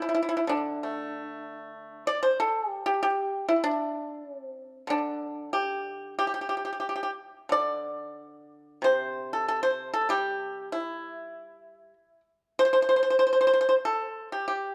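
This Chinese traditional piece for solo plucked strings has a flowing, serene mood and lasts just under 15 seconds, cut from a longer work. A single pipa carries the whole passage from 0.0 to 14.7 seconds, moving freely in rubato around 89 to 100 BPM within a loose 4/4 frame. Played with fingerpicks, the instrument sounds mellow yet percussive, spanning C3 to D5 and sitting dry and up front, with a short slapback echo trailing its notes. The close, detailed microphones capture the acoustic character of the strings, set in a light reverb. The tuning sits slightly high, at A4 = 442 Hz.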